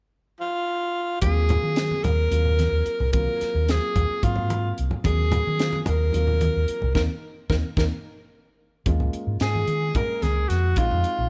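A breathy, whispered alto saxophone with light vibrato and slapback echo carries the melody up front in this driving, slick electric jazz fusion excerpt in 7/8 at 220 BPM in Eb dorian, joined at 1.2 seconds by a round, amped fingered electric bass, a crisp fusion drum kit with a high-tuned snare and tight kick, hard-handed congas in the background and a dark, boxy concert grand piano with audible action noise, with a band accent before a clean, picked hollow-body jazz guitar adds a second line at 9.4 seconds, all in a dry sound.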